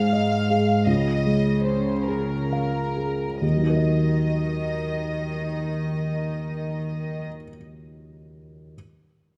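A dark, warm scoring-stage sound frames this sorrowful, bittersweet cinematic fragment in a rubato 6/8 that slows through its first 3.4 seconds, where an intimate, up-front baby grand with audible action noise carries the accompaniment beneath a rich, close violin section singing the melody sul tasto with light vibrato and a soft attack, while a distant, floating cello section holds the bass until both strings stop at 7.2 s and the piano rings on alone to 8.8 s.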